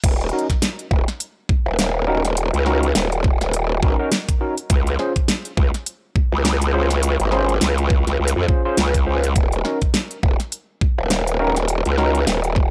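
A dry, gritty recording with digital ambience opens on a glitch hop drop in Eb dorian at 103 BPM, swung on the sixteenths and moving from Ebm7 to Dbmaj7 and back, funky and rough in mood. Up front, a knocking electronic kick and a pop kit with a fat snare, crisp low-passed hats and filtered crash drive the groove, while a growling, wobbling bass with a formant filter, chorus and overdrive sits saturated and bright between Eb1 and F2. From 0.3 seconds, barky stabs from an overdriven tine electric piano through a combo amp pump with sidechain and trail analog delay and chorus, in a short cut from a longer piece.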